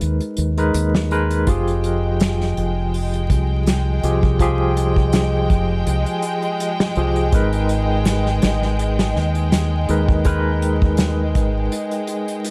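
A lightly swung 82 BPM groove in 4/4 from an up-front acoustic drum kit, with a punchy kick and bundle sticks, anchors this dark, cinematic trip hop excerpt in F minor, joined by a round, deep dub fingered electric bass until 11.7 s, a bright, barky tine electric piano treated with tremolo and tape echo, very quiet maracas from 0.7 s, and a smooth symphonic violin section with vibrato holding sustained chords from 1.5 s over Abmadd9 and Fmadd9 harmony, the dark production dusted with vinyl crackle and small room reverb.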